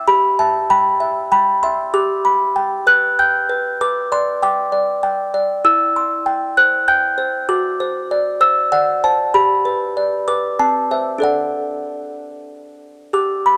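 A dark production bathed in a moderate plate reverb frames this dreamy, tender classical lullaby, a short cut from a longer piece in which a solo music box, delicate, tinkling and slightly out of tune, sits up front and plays alone across C4 to G6 at 97 BPM in a straight 3/4, drifting through gentle chords from Em/G and G to C/E, D7/F# and a closing D, tuned to A4 = 439 Hz.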